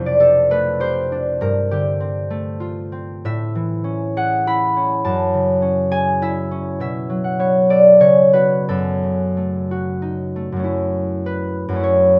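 In a gently rubato 3/4 that drifts between 85 and 108 BPM, this dreamy, serene classical fragment features a solo concert harp, fingerpicked and ringing, spanning F2 to B5 and sitting up front in light reverb. Lush extended chords such as Gm11, Amaj7 and F#m9 settle into F# minor from 3.3 seconds, moving through suspended colours before landing on F#m7 at 10.7 seconds as the passage shifts into a new section and is cut off at 12.2 seconds.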